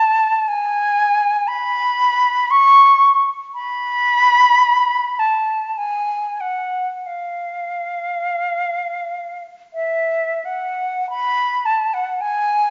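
Meditative and lonely, this short classical fragment from a longer piece features a single concert flute playing entirely alone. The flute moves freely in 3/4 at a slow, rubato pace between about 39 and 60 BPM, staying between E5 and C#6. Its airy, tongued tone carries an expressive vibrato and sits up front, yet it keeps a faintly distant quality. A moderate recital-hall reverb of about 1.8 seconds surrounds each phrase, and the sound is softened by a top end that stops around 7.5 kHz. At 11.1 seconds a new passage begins, and the flute carries on until the fragment ends at 12.7 seconds.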